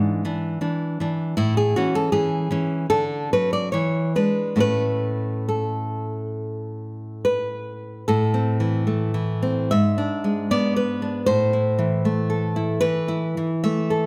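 Played with a free, rubato sense of time in 4/4 at roughly 66-81 BPM, this romantic piece for solo classical guitar carries a sunny, nostalgic mood, opening in A major before turning to A minor at 8.1 s. The fingerpicked nylon-string guitar sits up front with a bright, fresh-stringed tone, and audible finger squeaks add intimacy. Moderate recital hall reverb surrounds the playing in this short section cut from a longer piece, tuned slightly below standard pitch at A4 = 438 Hz.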